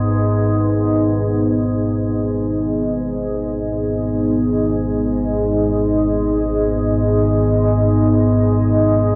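A dreamy, reverb-soaked mix with a moderate plate reverb gives this short cut from a longer dark ambient drone piece a cavernous, dark atmosphere. It floats in free time in G# minor, tuned to A4 = 441 Hz, and rests on a single G# minor chord. Up front, a deep, moody pad of detuned sawtooth and sub-octave layers holds sustained chords with slow attacks and long releases, its chorus and built-in reverb lending it a shadowy glow. Also up front, a calm, organ-like drone in unison sine tones sits low in the register, colored by ensemble chorus, built-in reverb and a phaser. A metallic, ringing bronze singing bowl, struck with a suede striker and heard only faintly with slow beating, sounds for the opening 1.3 seconds. From that point until the close at 9.2 seconds, a filter sweep moves across the synth drone.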